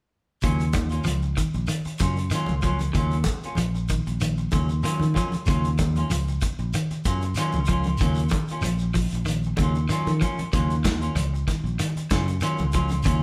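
At 0.4 s a defiant, funky afrobeat groove in Eb minor gets underway, settling at 95 BPM in 4/4 with a light sixteenth-note swing and resting on a single Ebm9 chord. The fingered electric bass sits up front, warm and direct, while a vintage drum kit drives underneath with a punchy kick, a medium-tuned snare, hi-hat and a rolled-off top, all pumping in a small room. An electric guitar at the edge of break-up picks slightly gritty arpeggios in a narrow low range, as a clean, hollow-bodied semi-hollow electric guitar adds picked stabs above it. A grainy, mellow shekere sits close and dry in the background, and low-tuned, damped congas with a thick skin join at 0.7 s, also tucked back. The band plays live together in one room, with a moderate large-studio reverb giving the whole a roomy, cohesive sound across this short fragment cut from a longer piece.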